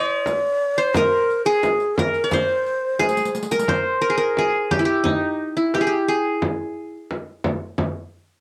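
The qanun carries the melody up front in C maqam saba, its fingerpicked triple strings sounding bright-edged and acoustic as it plays through to 8.1 seconds. Beside it, a breathy low ney adds a second line of tongued, end-blown reed-cane tone with vibrato, lifted highs and a cassette-tape coloring, falling away at 3.3 seconds. From 0.3 seconds a deep, large frame drum with a vintage, band-limited character sits up front, together with a lower-level riq whose bright jingles ring in a small room until 3.7 seconds. A drum fill leads into the second section. This passionate, warm Arabic maqam ensemble piece moves at 88 BPM in a straight 4/4, is cut from a longer performance, and has light reverb and the homespun quality of a home cassette recording.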